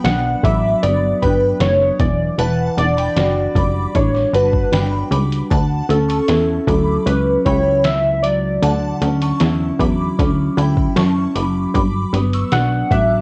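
Cut from a longer piece, this dry home cassette recording has a nostalgic, dreamy indie and bedroom pop feel, with warbling lo-fi synth keys carrying the melody up front through an analog chorus while a bright FM bell with a lush ensemble chorus and tape echo shimmers above as a second line. A dark, clean, fingered electric guitar with a subtle chorus and warbly pitch drift supplies the accompaniment, and a punchy, funky analog bass with a fast-attack filter pluck sits prominently beneath. A compressed, pitched-down sampler-style kit with a thumpy kick and fat snare, re-recorded in a large room, keeps a straight feel as the harmony moves from Gmaj7 through Em9 and Dmaj9.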